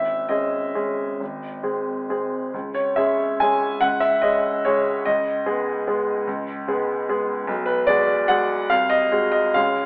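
A rubato waltz in 3/4, drifting between 126 and 159 BPM, sets the bittersweet, nostalgic mood of this short classical solo for a bright baby grand piano, whose brilliant, open tone and long sustain sit up front across a range from G#1 to G#5, moving from G#sus4 through C#m to G#7/B# within the 9.9 seconds cut from a longer piece, all heard through a telephone-like filter with moderate recital hall reverb.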